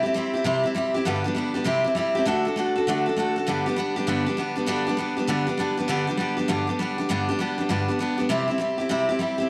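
A bright, full-bodied dreadnought steel-string acoustic guitar carries this rowdy, upbeat rock excerpt alone, picked up front with a slapback echo over a range from G2 to A4. At 199 BPM in 4/4 with a swung eighth-note feel in G major, it moves through C, G and D before settling on G at 3.5 seconds and turning to C at 8.3 seconds. A moderate echo-chamber reverb gives the short cut from a longer piece a roomy, ringing tail.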